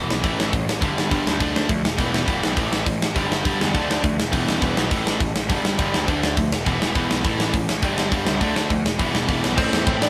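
Punk rock at 205 BPM in A minor, raw and aggressive, with a tight acoustic drum kit up front in a big room, its medium-tuned snare, tight kick, hi-hat and crash driving a cycling A5, G5, Dm, Em progression. Two overdriven, picked electric guitars carry the riff, one biting and warm, the other a bright cranked stack sitting in the background, over a growly fuzz bass. Just at the end, at 9.6 seconds, a twangy, compressed, slightly broken-up lead guitar slips in with a melody as the chord lands on Am, all captured as a band playing live in one room with light reverb in this short cut from a longer piece.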